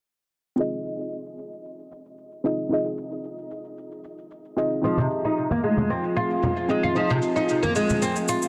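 Organic downtempo at 113 BPM in F minor pentatonic, hypnotic and meditative, opening on an Fm7 chord stab that is deep, soft and nasal, with chorus, digital delay and a filter sweep, over an overdriven, layered electronic shaker. From 4.8 seconds a woody, plectrum-plucked fretless oud with doubled strings plays up-front arpeggios through delay, together with ringing, close bongos and congas. At 5.4 seconds a warbling, nostalgic lo-fi pad adds detuned sustained chords with chorus and phaser, all within a huge ambient reverb and a dense, heavily limited, low-passed master in this short cut from a longer piece.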